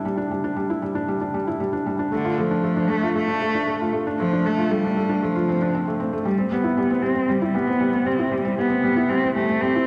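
A felt-muted upright piano opens this intimate, moving electronica excerpt, playing a soft, mellow riff up front with short sustain, audible action noise and a tape echo over an Em7 chord. At 2.1 seconds, as the harmony shifts to Dm7, a single bowed cello enters with a rich, focused melody, its vibrato sitting close and present through a low-pass filter. The two parts share a steady, straight pulse while a wet recital hall reverb surrounds them and the top end stays gently rounded. From 6.3 seconds the piece moves into a build-up over a rootless Am7, with a filter sweep shaping the cello's tone. The passage ends at 9.9 seconds, partway through a longer piece.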